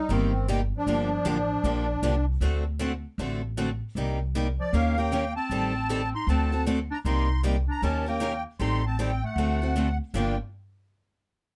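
A reedy, shimmering musette accordion carries the melody over a clear, scooped-note clarinet second line in this swinging, virtuosic excerpt of acoustic string swing, both pausing briefly before returning at 4.6 seconds, while two bright, picked steel-string guitars, one boxy, play the accompaniment and a woody, thumpy upright bass sits up front in a close, dry sound.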